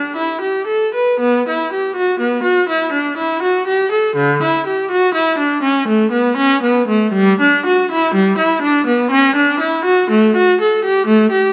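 A classical, baroque-style suite movement for unaccompanied viola, this brief passage cut from a longer piece unfolds in a radiant, serene mood at 61 BPM in 3/4 with a flexible rubato feel, tuned to A4 = 435 Hz. A single bowed viola plays alone from 0.0 to 11.5 s, its clear, focused tone and vibrato ranging from D3 to B4 and sitting up front. Close, detailed microphones capture the instrument within a moderate recital hall reverb of 1.7 s.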